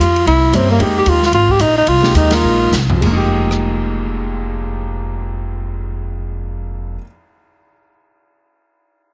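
Moody and late-night, this fast small-group swing and bop jazz fragment in F minor, cut from a longer piece, opens with a breathy, whispered tenor saxophone carrying the melody over woody pizzicato upright bass and an airy drum kit with dark cymbals, before easing back from 0.8 seconds through a band accent and drum fill as the saxophone stops at 2.7 seconds and the drums drop out at 3.6 seconds, leaving the deep-toned, vintage grand piano and bass under a heavily compressed radio sound.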